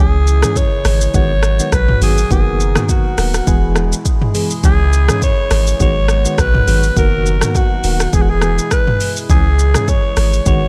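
This short, dry excerpt from a longer afrobeats piece sounds smooth and mellow, moving at 103 BPM in 4/4 with a light swing on the sixteenths. A breathy, raspy alto saxophone carries the melody with vibrato and a smooth top, its lines trailed by tape echo. Beneath it, soft, round electric-piano-like synth keys shimmer with chorus and tremolo, while a hollow, flute-like pad sits in the background holding sustained chords. A punchy sine sub bass with a pitch-drop attack anchors the low end, and a deep house drum kit enters at 0.3 seconds, up front with a deep kick, metallic hats, rim click, shaker and toms. The harmony cycles through C#m, G#m7, Bmaj7/F# and E, giving the passage a relaxed, looping glow.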